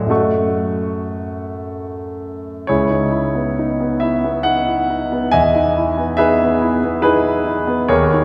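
Bathed in a wet church reverb with a long 2.8-second tail, this recording has a spacious, resonant sound that surrounds a polished, up-front grand piano. It is a short, mysterious and nocturnal passage of impressionist classical solo piano in C# minor, cut from a longer piece and moving at 70 BPM in 3/4 time with a rubato feel. The piano plays alone throughout its 8.2 seconds, spanning a broad register from C#2 to C#6 with a warm, present tone. The harmony drifts through rich extended chords, opening on F#m6, shifting to C#m9 at 2.7 seconds as a new section begins, and arriving at Emaj7 at 5.3 seconds. The flexible timing and the lingering church ambience give the music a dreamy, suspended atmosphere.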